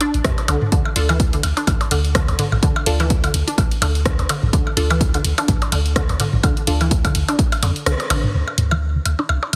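A squelchy, resonant blip pluck carries the riff in this cool, hypnotic minimal techno cut from a longer piece, its detuned, chorused tone pumping against the sidechain and trailing delay. Beneath it a deep, punchy sine sub bass with a pitch-drop attack pumps in turn, while a tape-warm analog drum machine ticks out hi-hat, ride and rim click, and overdriven electronic blips and toms add grit through tape echo. A punchy electronic kick anchors the groove until it stops at 7.5 s, and a muted, filtered dub chord stab enters at 1.0 s, shimmering with phaser and tape echo. At 8.3 s the synth arpeggio sound moves through a filter sweep over a final D5 chord. The 16th-note swing gives the loop a gentle lilt, and the whole track sits in light reverb with a heavily compressed, radio-like sound.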